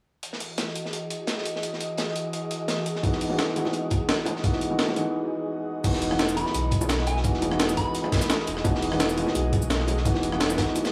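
Light reverb and small room ambience frame this uplifting, lush liquid drum and bass excerpt at 171 BPM in E major, where an airy, breathy pad holds an Emaj7 chord with chorus and sidechain pumping over a gritty, pitched-up sampler breakbeat and a crunchy, saturated second kit, a dark, up-front grand piano with dub echo joins the thumpy kick and very quiet bongos at 3.0 s, and after a filter sweep and brief break the deep sine sub bass drops in at 5.8 s while a soft, pure FM bell drifts in the background with phaser and echo.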